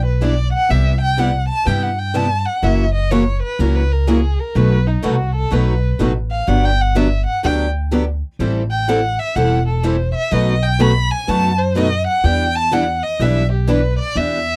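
A dry, close recording in a 1970s studio style captures this bittersweet, virtuosic gypsy-jazz string swing in E minor, taken from a longer piece, at 125 BPM in a swung 4/4. A warm, bowed violin solos up front from 0.0 seconds with expressive vibrato, soft attacks and portamento, over a woody, thumpy pizzicato upright bass on gut strings. Two bright, boxy picked parlour guitars with audible finger squeak supply the accompaniment, one sitting in the background with fresh strings, through changes such as Em7, Cmaj7, F#7, B7b9 and Gmaj7.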